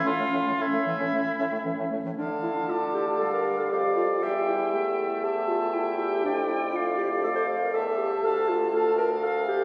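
A straight 4/4 pulse at 119 BPM drives this stormy, restless classical-period movement for wind quintet in D minor, cut from a longer piece and heard in a church or concert hall with a wet, lingering reverb. The pure, expressive flute carries the melody with vibrato above a distant, roomy oboe on the second line, while a dark, punchy clarinet and a clear French horn fill out the accompaniment. Beneath them a soft-attacked, vintage-toned bassoon holds the bass as the harmony moves from A through D minor.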